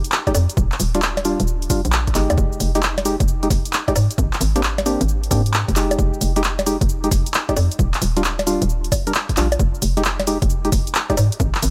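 This two-step UK garage excerpt rides a swung 4/4 groove at 133 BPM, with the 16ths pushed to a 66% shuffle that gives the late-night, moody track its skip. A punchy analog drum machine sits up front from the start, laying out bongos, cabasa, handclaps, hi-hat and a punchy snare with a short room on the snare, clap and hats, while an electronic kick drum joins at 0.3 seconds with a tape-warm thump. Underneath, a hollow, knocking FM bass bounces between Eb1 and Ab2 with a fast attack and quick decay, also placed close in the mix. A mellow, percussive organ-like stab built from sine and triangle tones with a noise layer punctuates the harmony, its chorus and dub echo trailing off behind each hit. The chords in F dorian move through Fm9, Ebmaj9 and Abmaj9#11 over a digital ambience, and the stabs drop away at 11.2 seconds as the groove runs out.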